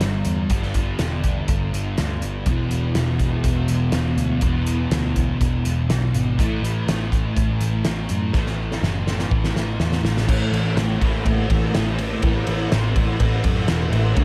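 Up front, a double-tracked fuzz guitar plays a distorted, picked riff through ensemble chorus, moving from G5 to E5 and then A5 in this hazy, dreamy shoegaze and dream pop fragment cut from a longer rock piece at 123 BPM in a straight 4/4. Beneath it, a vintage muted electric bass gives a dark, round, foam-muted low end, while a loose indie drum kit with a fat snare, punchy kick and dark cymbals pumps in its studio room. A drum fill from 8.3 to 10.3 seconds leads into a new section, all set in a studio reverb.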